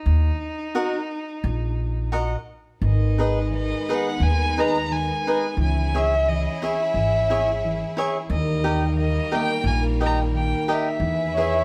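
A lightly swung four-beat lilt drives this passionate, dramatic mariachi passage, where a rich, smooth solo violin sings the melody up front with vibrato over woody pizzicato upright bass and crisp picked cavaquinho, joined at 2.8 seconds by a lush, bright violin section sustaining chords in the background and ringing thumb-plucked concert harp arpeggios, before a dark, classical-style trumpet slips in at 11.3 seconds, the band heard live together in one room with a moderate large-studio reverb.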